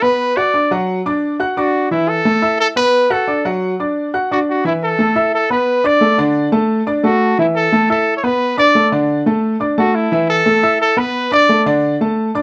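A punchy, vintage-toned solo trumpet with scooped notes carries a sunny pop-style melody up front in this festive Latin fragment, backed by a present grand piano whose long-sustaining chords rock between D and Asus2 in light reverb and ring on briefly after the trumpet drops out at 11.6 seconds.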